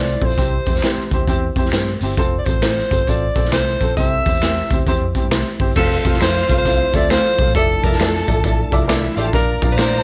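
Heard through a light reverb, this brief cut from an uptempo, swung 1960s-style soul piece has a warm, joyful glow. A raw garage drum kit sits up front with a boomy kick, a medium-tuned snare, a gritty, saturated character and a rolled-off top, joined by very quiet finger snaps. Beneath it, a foam-muted, round picked electric bass and a woody, boxy upright piano carry the groove. A clear alto saxophone leads the melody with vibrato and a jazzy subtone, while a slightly broken-up electric guitar through a small old amp adds a faint riff, briefly at the very start and again from 3.4 seconds. At 5.8 seconds a dark, lush bowed violin section takes up a second line in the background, alongside a mellow, percussive tonewheel organ holding sustained chords through chorus vibrato and a fast rotary speaker.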